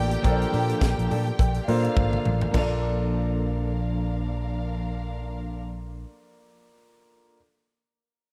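A short disco excerpt in Bb major at 104 BPM opens on a Bbmaj7 chord, with a warm grand piano, a dark, round fingered electric bass sitting up front, and a lush, woody string section bowing sul tasto with vibrato as a second line above. An electric guitar at the edge of break-up adds compressed, picked accompaniment with a tremolo effect, tucked into the background. From 0.1 seconds a tight funk drum kit drives the 4/4 groove with a high-tuned snare, tight kick, hi-hat, crash and toms, joined by very quiet, metallic cowbell and bright, high-tuned congas played close and dry with hard hands. The swung sixteenths give the feel a joyful, danceable lift, and a drum fill from 2.0 to 2.5 seconds marks the move into a new section before the kit and hand percussion drop out around 2.8 seconds. The strings, bass and guitar drop from the texture by about 6 seconds, leaving the piano sounding until 7.4 seconds, all set in light reverb.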